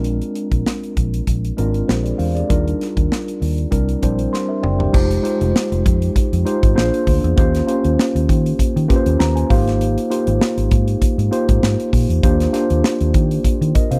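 A mellow tine electric piano with subtle chorus, a dark, round, foam-muted fingered electric bass and a punchy, polished acoustic drum kit with bright cymbals all start together in this excerpt of nocturnal, bittersweet 1980s jazz-funk pop, moving with a lightly swung sixteenth-note feel. The clean electric piano sits up front, voicing lush extended chords such as Ebmaj9, Fm9 and Abmaj13, and adds short fills at 4.0 and 8.9 seconds, while a drum fill from 4.3 seconds leads into the second section at 4.9 seconds. The sound is dry and close, with a small room ambience giving the airy kit its space.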